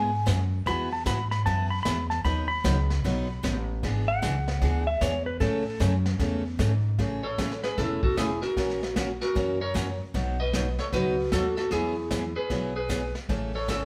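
A live band plays together in a large studio with moderate reverb, on a playful western swing country tune in A major at 152 BPM with a swung 4/4 feel, tuned to A4 = 444 Hz. A bright, full-bodied picked dreadnought acoustic guitar with audible finger squeak picks out the chords, while a woody, thumpy gut-string upright bass and a vintage brush kit with a tight kick and rolled-off top keep the swing going. An up-front lap steel played with fingerpicks carries an opening slide second line until 5.8 seconds, and at 7.2 seconds a darker, compressed, fingered lap steel picks up the melody over chords such as E7, Amaj7 and F#7/A#.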